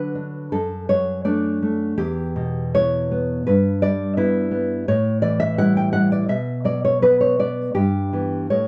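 The rhythm moves freely in 2/4 at about 83 BPM, its beats uneven and stretched by rubato so the pulse breathes rather than marches. This is a romantic piece for solo classical guitar, and its mood is sunny yet nostalgic. The nylon-string guitar carries everything alone, thumb-plucked on fresh strings, sitting up front with a warm acoustic tone that spans from E2 up to G5. The harmony opens on D and D/F#, settles into Em and Em/G, then leans through A5 and B5 before returning to Em/G at 7.7 seconds. A moderate studio reverb gives the notes a soft halo, and the dark, warm production frames this short fragment, cut from a longer piece.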